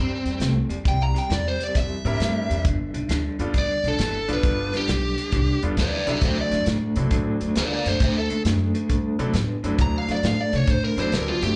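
Electric blues shuffle at 134 BPM with a gritty, rollicking swing, where a biting, overdriven lead guitar solos up front with slapback echo over a slightly broken-up, lo-fi rhythm guitar riff with tremolo, a woody, thumpy pizzicato upright bass, a warm soul drum kit of hi-hat, kick and snare entering at 0.3 s, and a brilliant grand piano with slapback echo joining at 2.0 s, all heard as a live club gig through the venue's PA, in an excerpt cut from a longer piece.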